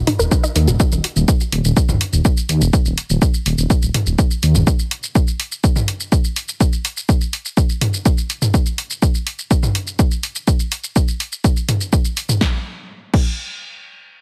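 A heavily compressed, radio-like sound with little reverb frames this dark, cinematic melodic techno excerpt, where a lush, wave-folded unison pluck plays arpeggios through sidechain pumping and delay for the opening 0.7 seconds beside a menacing, saturated detuned saw bass that swells through its filter until 4.6 seconds, while a punchy, tape-warm analog kick and a layered electronic kit of crash, hats, shaker, punchy snare and toms, re-recorded in a small room, drive on up front.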